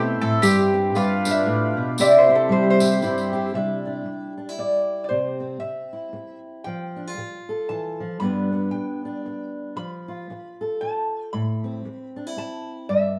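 A live, roomy sound with wet studio reverb places this small acoustic folk band together in one space, setting a peaceful, warm mood in a swinging three-beat feel. Up front, a lap resonator guitar carries the melody with a metallic, nasal slide tone, played with a steel bar and fingerpicks. Beside it, a fingerpicked steel-string acoustic guitar supplies the accompaniment throughout this excerpt. In the opening section, a reedy, rich accordion holds sustained chords, a bright mandolin with round double strings adds a second line, and a jingly tambourine provides percussion; all three drop away by 3.5 seconds. From there the two guitars continue as a duo through a second section, whose harmony moves from Cadd9 and C to F, G, F and A minor.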